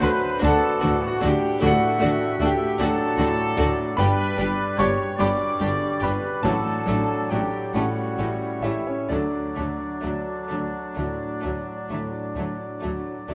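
Close, detailed microphones and a moderate scoring-stage reverb frame a clear, up-front grand piano carrying a lyrical, passionate melody in D major, with a faint, vibrato-laden violin section also singing the melody from a distance. This is a slow, rubato classical passage in 12/8, around 42-52 BPM. Flute, clarinet, oboe and a second, richer violin section weave soft second lines above bassoon and viola accompaniment, dark French horns hold distant sustained chords, mellow trumpets add quiet stabs, and tuba, cellos and a lush double bass section anchor the bass, while hard-mallet timpani touch in only from 6.4 to 7.7 s as the harmony moves from D7 through G toward a closing D.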